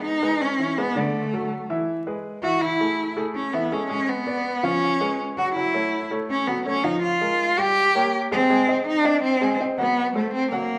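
A warm, woody upright piano opens this danceable, sunny jazz fragment in a straight 4/4, with a single bowed cello taking the melody almost at once, its rich tone carried by vibrato, soft attacks and expressive portamento. Both sit up front in a reverberant recital hall under a vinyl crackle, the cello clearly louder than the piano. The harmony drifts from Emaj7 through colors like C#7, F#m7 and A#m13/G before landing on F#dim at 10.0 seconds, shortly before the excerpt cuts off.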